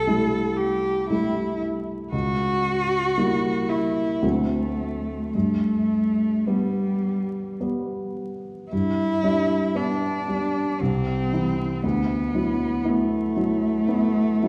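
A bowed cello and a baby grand piano begin together in this serene, lyrical excerpt from a longer romantic classical piece, set in an unhurried 3/4 with a flexible rubato feel. The single cello carries the melody with a rich, focused tone, vibrato and a smooth top, while the natural-sounding piano supplies the accompaniment beneath it, both sitting up front in the balance. The pair is heard from further back in a reverberant scoring stage, with vinyl crackle over the sound, as the same phrase comes round a second time at 8.7 seconds.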